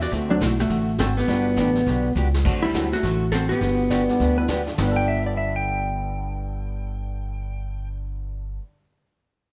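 A dark, clean hollow-body jazz guitar carries the melody up front in this cheerful, down-home slice of western swing, picking through its compressed line in G major until about 4.5 seconds. It rides a brisk 206 BPM with a light swing on the eighth notes, over a woody pizzicato upright bass and a vintage brush kit whose dark cymbals, medium-tuned snare and boomy kick sit back in a natural studio room, with a drum fill at 2.2 seconds. A picked acoustic archtop guitar with old strings adds a boxy picked part beneath, joined by a worn, slightly detuned upright piano tucked into the background. At 3.9 seconds a clean lap steel guitar slides in with a fingered second line up high, carrying on as the lead guitar falls away. The harmony turns between D7 and Gmaj7 before settling on G, and a moderate echo-chamber reverb lends the whole band a vintage sheen in this short excerpt cut from a longer piece.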